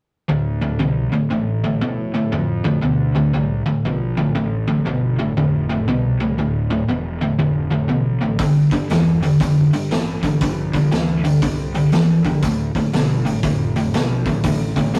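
Smoky and heavy, this blues rock and southern rock power-trio excerpt swings at 119 BPM in D minor, opening on a dark, double-tracked overdriven guitar riff sitting up front alongside a growly, fuzz-laden fingered bass from 0.3 seconds. At 8.4 seconds a vintage drum kit with a gritty, rolled-off top joins on hi-hat, tight kick and medium-tuned snare as the harmony moves from Dm7 to Gm, returning to Dm at 12.4 seconds. The rough rehearsal-room sound carries saturation and a wet studio reverb.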